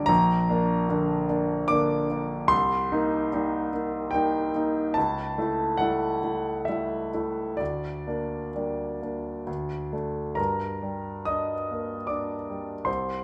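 Melancholic and yearning, this short excerpt from a longer romantic nocturne for solo piano unfolds in G minor at a rubato pace between 63 and 78 BPM in 3/4 time. A clear grand piano carries everything from the first moment to the last, spanning from Bb1 up to Eb6. Its tone is intimate and polished, sitting up front and present, with long sustain and audible action noise that draw the listener close to the instrument. The harmony moves from Bb through Cm7 and A7/C# to Gm/D, settles briefly on a bare D5 chord, then turns to Gm as a new section begins at 10.4 seconds. A moderate reverb from a large studio surrounds the playing, lending the phrases a gentle sense of space as the passage ends at 13.2 seconds.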